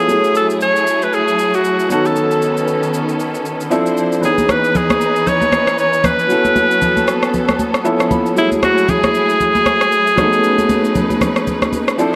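Heard through worn, warbling cassette tape with a slight pitch drift and light reverb, this late-night amapiano excerpt has a deep, swung 4/4 feel. A breathy, edgy alto saxophone carries the melody up front with tape echo, over a clear concert grand piano with open, deep bass that adds short fills at 3.5 and 7.6 seconds, and a lush, distant bowed string section holding sustained chords. An electronic shaker and rim click keep time throughout, and high-tuned, close and dry congas with a thick-skinned sound join at 4.4 seconds as the extended chords move beneath.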